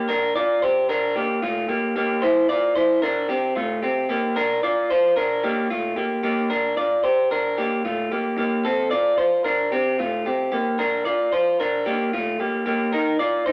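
In a straight four-beat feel, this bright, breezy indie pop fragment features a lone electric guitar through a small old amp, its twangy, slightly broken-up, lo-fi picked tone sitting up front in a wet large-studio reverb captured live in one room, as the chords move from Bb through Cadd9 and Bbmaj7 to Ebsus2 at 12.9 seconds.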